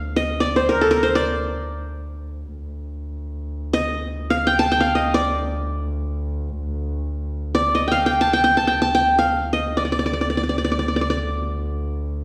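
A plectrum-plucked qanun sings a longing, hypnotic melody between A4 and A5 in free time, its bright-edged triple strings placed up front, while a single bowed double bass holds a dark, airy drone on D2 beneath it. This Arabic maqam kurd passage on D is cut from a longer piece. The bass, played sul tasto, has a nasal, boxy tone, and both instruments sit in the wet reverb of a recital hall, heard from further back in the room, until the qanun stops at 12.1 seconds and the bass at 12.2.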